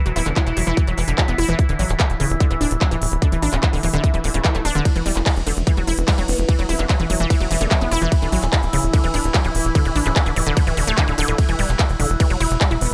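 A ring-modulated sawtooth drone with chorus and slow-attack moving overtones opens this alien, hypnotic psychedelic trance excerpt, quickly joined by a lush detuned unison pluck riff with cassette-tape grit and dub echo, a tight, saturated sequencer bass up front, an overdriven big-room drum kit of handclaps, crisp hats and ride, and a tight layered electronic kick, while a very quiet, nasal formant-filtered wobble bass surfaces briefly around 6.3 seconds and a faint electronic swell enters at 4.2 seconds over chords shifting between E5 and D5.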